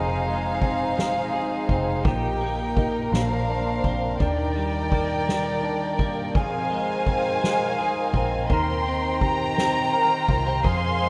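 A rough home-demo mix with light reverb and a small-room feel frames this tender, romantic six-eight pop ballad fragment, where an up-front, sul tasto studio string section holds soft-attack chords over a double-tracked, clean, scooped electric guitar and a dark, round, foam-muted fingered bass, joined at 0.3 seconds by a soft-mallet drum kit with a boomy kick and dark cymbals, before a chamber violin section with a smooth top and slapback echo adds a high second line from 6.4 seconds.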